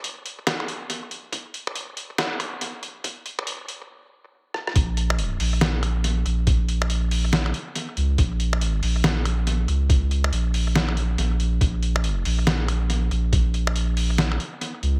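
A swung, half-time groove drives this dark, meditative deep dubstep excerpt, where a gritty, pitched-down sampler-style trip hop kit of finger snaps, hi-hat, rim click and a medium-tuned snare, thinned by high-pass filtering and trailed by analog delay, builds alongside a thumpy, tape-warm electronic kick from 1.3 seconds, until a drum fill at 4.5 seconds tips into the drop at 4.8 seconds, where a deep, round, soft dub sub bass enters up front within an echo-heavy mix with light reverb.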